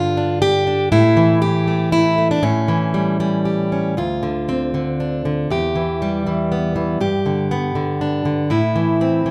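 Folk fingerstyle piece in D dorian, cut from a longer work, with an intimate, haunting mood and a loose rubato feel in 3/4 at around 119 BPM. A single fingerpicked, plugged-in steel-string acoustic guitar plays alone from 0.0 to 9.3 seconds, sitting up front with a concert tone as it moves from G5 and A7 chords into a second passage at 4.0 seconds that passes through Dm7, Em, G and Am. A moderate scoring-stage reverb adds a two-second tail around the guitar.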